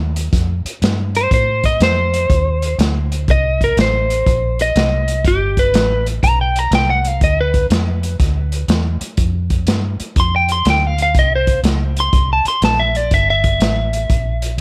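Electric blues shuffle at 122 BPM with a swung feel, gritty and rollicking, cut from a longer piece. A dark, round, foam-muted electric bass opens at 0.0 seconds, a muffled, lo-fi vintage drum kit with tight kick, medium-tuned snare and hi-hat joins at 0.2 seconds, and a slightly broken-up, picked lead guitar carries the melody from 1.2 seconds, all sitting up front. The chords move through F7, Adim, G7, Dmadd11 and C7 under light reverb.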